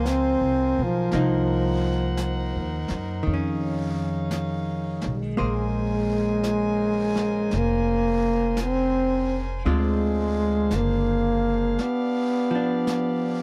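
Jazz ballad at 56 BPM, intimate and melancholic with a gentle swing, led by a warm, close-miked trombone melody with vibrato and a soft attack over dark, clean, compressed hollow-body archtop guitar, a present saxophone section holding sustained chords with light vibrato, woody, thumpy pizzicato upright bass that drops out at 11.7 s, and a natural small-room drum kit played with brushes, heard in a dry, close 1970s-style studio sound with light reverb as the harmony moves from Gbmaj9#11 through Db9 and Bbm9 to G7.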